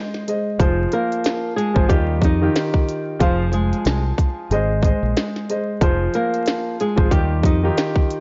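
A mellow, vintage concert grand piano with short sustain opens this dry, gritty boom-bap hip-hop excerpt in F minor at 92 BPM with swung sixteenths, soon joined by a tight, clicky electronic drum kit with a tiny snare, a deep, round fingered electric bass from 0.6 seconds, and a boxy, fingerpicked flamenco guitar melody with tape echo from 0.9 seconds, set against vinyl crackle and a muffled top end that make the mood dark and tough.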